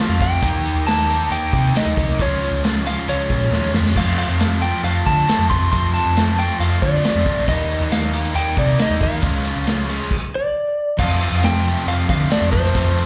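Heard live through a club PA with a touch of room sound, this swaggering, confident classic rock piece at 136 BPM in F mixolydian features a dark, slightly broken-up, compressed slide guitar played with fingerpicks carrying the melody with slapback echo and analog delay, over riffs from a bright, overdriven cranked stack guitar and a distorted electric guitar sitting in the background, a round, punchy overdriven bass up front, and an acoustic vintage drum kit with a rolled-off top that throws in a fill at 3.5 seconds as the chords move through Eb, Db and F.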